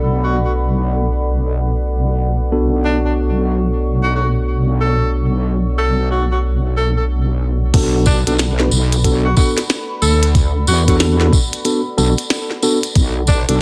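A dry glitch hop excerpt in B minor at 92 BPM with a swung 16th feel, playful and funky, where a heavy, saturated wobble bass sits up front under a dark, detuned analog pad pumping with sidechain, mellow electric piano stabs with delay, and a distant, roomy tenor saxophone melody with vibrato entering at 0.2 seconds, before the drop at 7.7 seconds brings in a gritty, thumpy kick, a glitchy kit of tiny snare, clicky hats and crash, and a jingly acoustic tambourine.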